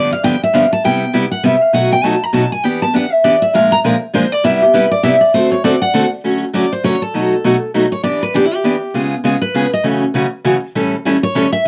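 A swinging 3/4 lilt at 200 BPM drives this playful, charming jazz fragment, cut from a longer piece, which settles into D major at 6.2 s. Two picked steel-string acoustic guitars sit up front: a full-bodied dreadnought carries the melody while a boxy parlour guitar with fresh strings and audible finger squeak plays the accompaniment, both bright in tone. The dry, close 1970s-style studio sound has a light touch of reverb, and the excerpt's seventh-chord harmony ends on A7.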